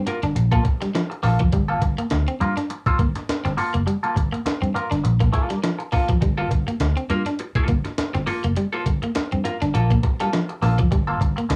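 Funky and driving, this short cut from a longer funk piece sits on a single Gm9 chord with a lightly swung sixteenth-note feel. A dark, round, foam-muted fingered bass and a gritty, compressed breakbeat kit with a thumpy kick and high-tuned snare sit up front, joined by a clean, picked semi-hollow guitar through phaser and a slightly broken-up electric guitar riff with harmonic tremolo. Cassette tape colours the guitars and drums, and the whole is caught as a dry home recording with small room ambience.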